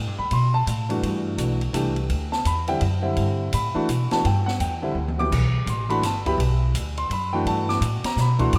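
Modal jazz in a swung 3/4 at 168 BPM in G major, spiritual and hypnotic, cut from a longer piece where a woody, pizzicato upright bass opens at 0.0 s, joined almost at once by an up-front, warm grand piano moving from D9sus4 to Gmaj9 and by an open acoustic drum kit with dark cymbals, a high-tuned snare and a boomy kick, the kit playing a short fill at 5.0 s, all set in a lush hall reverb within a rough home demo mix.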